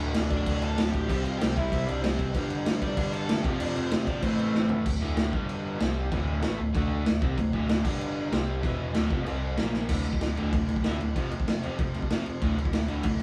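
Urgent and angry, this punk rock excerpt charges along at 191 BPM in D minor, with three overdriven guitars (a bright electric, a hollow-bodied semi-hollow and a tight, double-tracked distorted one) grinding out riffs in the background over a dark, round picked bass. Up front, a raw garage drum kit pounds along with a boomy kick, gritty saturation and a rolled-off top in a pumping small room, throwing in fills around 4.6 and 9.7 seconds. A bluesy, distorted lead guitar cuts in at 0.3 seconds and drops out by 4.7, while the whole band sounds like it is playing live in one room with moderate reverb.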